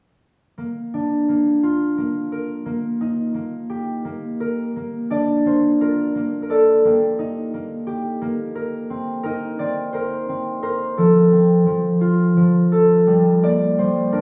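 Sleepy and tender, this short children's piece from a longer work drifts in a slow, rubato 6/8 at about 58 beats per minute in Bb major. A solo concert harp carries the melody from 0.6 to 14.2 seconds, its thumb-plucked, ringing tone sitting up front in a wet studio reverb as it moves from Bb through Eb over Bb, Cm7 and F before coming to rest on Gm at 13.1 seconds.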